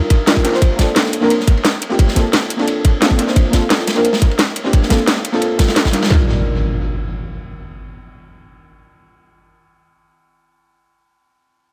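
Liquid drum and bass at 175 BPM, rolling and melancholic, built on a deep, mellow chord stab with a soft, warbling, detuned tone, chorus and tape echo that runs the whole 9.6 seconds, moving from Bbmaj7 to Ebmaj9/G. Three layered drum kits drive the opening until about 6.1 seconds: an up-front electronic kit with a tight kick, cracking snare and handclaps, a second with metallic hats and snare under tape echo, and a gritty, saturated acoustic breakbeat with dark ride cymbal and a rolled-off top. As the drums drop out, an impact lands at 6.1 seconds over the lingering stab, all within an echo-heavy mix with light digital ambience.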